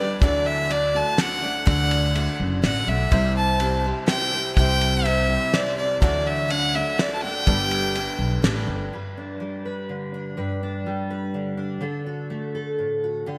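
A rich, earthy fiddle carries the melody up front with light vibrato and a touch of delay, over a picked auditorium-body acoustic guitar and a clear, deep-voiced concert grand piano in the background, opening this nostalgic indie folk excerpt in G major at 124 BPM in 3/4. Woody pizzicato upright bass and a cloth-damped, thuddy drum kit with a fat snare, dark cymbals and gated reverb join almost at once, all set in a lush hall with a bright 1980s-style digital sheen. At 8.9 seconds the arrangement gives way to a full-bodied, fingerpicked dreadnought guitar up front, bathed in lush chorus, as the chords move from G to D.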